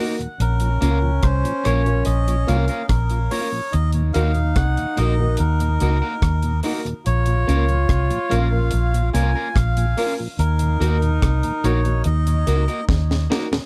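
A dry deep reggae drum kit with a high-tuned snare and tight kick anchors a hypnotic, laid-back roots reggae groove at 72 BPM in Bb minor, under a round, foam-muted vintage fingered electric bass sitting up front, a twangy, slightly broken-up electric guitar with tape echo and a mellow tonewheel organ on slow rotary speaker moving between Bbm and Ebm, woody, slightly detuned upright piano stabs, a reedy, breathy melodica carrying the tune through tube saturation and tape echo, and a distant bright trombone second line with scooped notes, before a drum fill at 12.9 s closes this cut from a longer piece.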